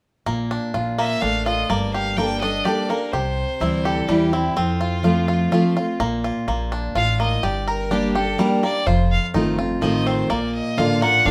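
A clear, intense fiddle carries the melody up front from 1.0 seconds, its bowed line airy with light vibrato and a slightly boxy edge. This is a lively, virtuosic bluegrass piece in 3/4 at 126 BPM in Bb major, heard as a short cut from a longer performance. A bright, fresh-stringed dreadnought acoustic guitar, picked and up front, supplies the accompaniment from 0.3 seconds, alongside a twangy, percussive banjo played with fingerpicks that spins arpeggios. An upright bass, plucked and woody, anchors the low end through the Bb, Gm, C, F and F7 changes. The band sits in a moderate studio reverb that gives the acoustic instruments a natural sense of space.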